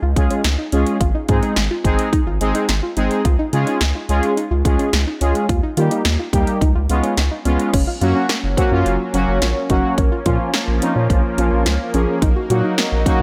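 A straight 4/4 pulse at 107 BPM drives this bright, upbeat synth-pop excerpt in Db lydian, with a house drum kit of punchy kick and snare, metallic hats and crash sitting up front alongside a deep, round analog bass. Bold, fat analog synth brass with a warbling vintage chorus carries the accompaniment, while a soft, gentle pluck spins arpeggios in the background through chorus, phaser and digital delay. At 7.7 seconds the harmony moves toward Gb and Bbm, and from 8.3 seconds a lush, thick unison pad with a slow attack adds sustained chords, all set in light reverb and digital ambience.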